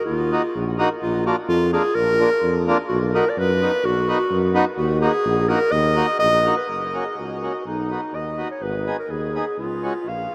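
Drenched in a huge reverb, this bouncy, jolly alpine folk dance-band fragment sounds as if played in a vast, echoing space, moving at 127 BPM in a straight 2/4. A warm, classical-style clarinet carries the melody up front, a roomy tuba with light vibrato and a soft attack holds down the bass, and a reedy, hollow, vintage-toned accordion fills in the accompaniment. The tune opens in E-flat harmonic minor before brightening into F-sharp major at 6.7 seconds.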